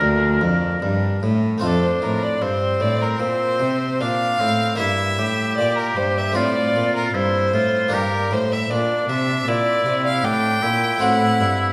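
A rubato 4/4 at 77 BPM carries this radiant, serene baroque-style sonata movement in F major, a fragment cut from a longer piece. An up-front, rich, focused violin sings the melody with vibrato, while a clear oboe with light vibrato shapes a second line, an airy, bright harpsichord supplies plucked accompaniment, and a smooth, even cello holds the close, bowed bass. All four play throughout the 11.7 seconds, wrapped in the wet reverb of a recital hall.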